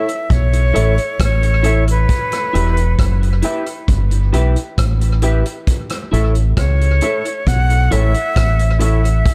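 The deep, round dub bass sits up front, dark and punchy beneath a slow, hypnotic roots reggae groove at 67 BPM in 4/4, moving through A and Em in this short cut from a longer piece. A breathy, reedy flute with vibrato and a crisp chiff carries the melody through tape echo. A vintage kit with punchy kick, hi-hat and rim click, slightly broken-up electric guitar with subtle chorus, and brilliant piano stabs set further back fill out a serious, echo-heavy mix with little reverb.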